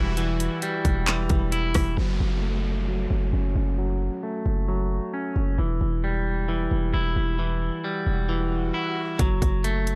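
Dark, melancholic half-time trap hip hop at 133 BPM in F# phrygian, cut from a longer piece, where twangy clean electric guitar arpeggios under a low-pass filter and tape echo run throughout over a punchy sine 808 bass, an airy detuned sawtooth pad with chorus sits in the background until 1.9 seconds, an overdriven trap kit with hard-clipped kick, bright hats, handclaps and rim clicks drops out at 1.9 seconds and returns at 9.2 seconds, while a filter sweep on the guitar, electronic downlifter and swell fill the drumless middle of a dry, gritty recording moving from Emadd9 to F#m and Em.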